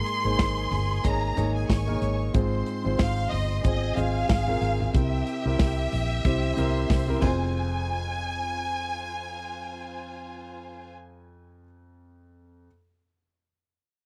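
Bittersweet and driving, this piano-driven pop excerpt moves at 92 BPM in 4/4 with a light 16th-note swing, set in F minor over Absus2, Fm and C7 chords. An up-front grand piano carries the accompaniment, while a lush, bowed violin section sings the expressive, vibrato-rich melody from a distant vantage. A second, smooth and even violin line runs alongside it, over a round, dark, foam-muted fingered electric bass and an acoustic drum kit with bright cymbals and a punchy kick that stops at 7.4 seconds. The sound is dry and close in a 1970s studio style, and the strings fall away at 10.9 seconds, leaving the piano to play alone from 11.6 seconds.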